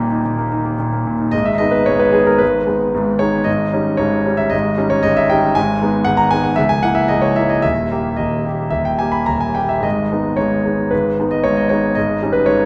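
A clear, up-front concert grand piano carries this brooding, passionate romantic character piece alone in G# minor at 113 BPM, its rubato phrasing, deep bass and long sustain set in a wet recital hall with the keys' action noise audible, across a 12.7-second excerpt cut from a longer work.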